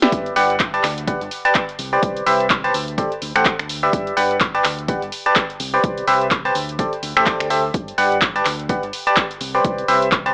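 Piano house with a feel-good, joyful mood, cut from a longer piece and sitting in a swung 4/4 groove that plays as a drop for its full length of about 10 seconds. A barking FM electric piano leads with the riff, up front and biting, its fast attack and decaying tone carrying a noise layer, treated with chorus, cassette tape character, sidechain pumping and dub echo. A punchy analog drum machine supplies finger snaps, handclaps, hi-hat and snare, tape-warm and forward, with a short room on the snare, clap and hats, while a separate electronic kick drum adds its own punchy thump. Underneath, a deep dub fingered electric bass enters at 0.1 seconds, dark and round with tube saturation and sidechain pumping, sitting low in the mix. The harmony cycles through Gmaj7, Cmaj7 and D7sus4, and the whole track has light reverb and a lo-fi AM radio coloring.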